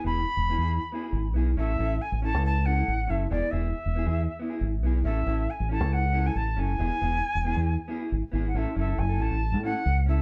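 Sunny highlife guitar band at 138 BPM in A major, where an airy jazz flute with vibrato and a crisp chiff sings the melody up front, a slightly broken-up, lo-fi electric guitar through a small old amp picks the accompaniment, and a deep, round, punchy fingered dub bass drives underneath, all played live in one room with moderate studio reverb as the chords alternate between E and A before a new section begins at 8.5 seconds.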